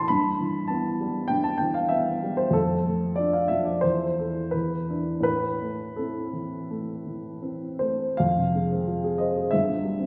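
A dark, woody upright piano opens this brief, stormy and brooding excerpt of a romantic classical character piece in A minor, played solo in 4/4 with free rubato between 71 and 100 BPM and spanning low G1 to high C6, its harmonies settling onto A minor around 5.2 s before turning darker with an F minor chord at 8.2 s, all heard from further back in a concert hall whose wet, lingering reverb hangs on every phrase.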